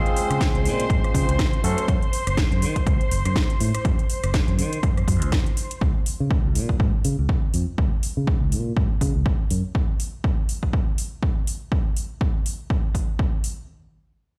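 This funky, feel-good slice of filtered disco house opens with a barky, lightly overdriven tine electric piano through a combo amp and a dark, smooth chamber string section holding bowed chords with vibrato, both low-pass filtered with sidechain pumping, and the piano drops away by 1.9 seconds. A punchy, up-front electronic kick and a house kit of cracking snare, metallic hats and rim clicks, both overdriven and re-recorded in a large room, push a swung sixteenth-note feel under a bright, growly fingered electric bass that pumps and stays filtered until 9.6 seconds. The strings fall out at 5.8 seconds, and the drums carry on in this cut from a longer piece.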